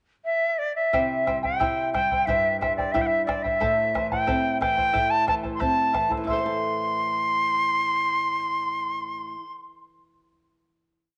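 Andean folk piece, earthy and wistful, in which a bright, reedy large quena carries airy, vibrato-laden hook phrases up front from 0.2 s over a fingerpicked and strummed charango with shimmering double strings, a flamenco guitar playing bass notes and chord figures with audible finger squeak, and a deep, dry bombo repeating its pattern until 6.6 s, the ensemble set in a small room with wet spring reverb before settling on a final chord at 6.3 s.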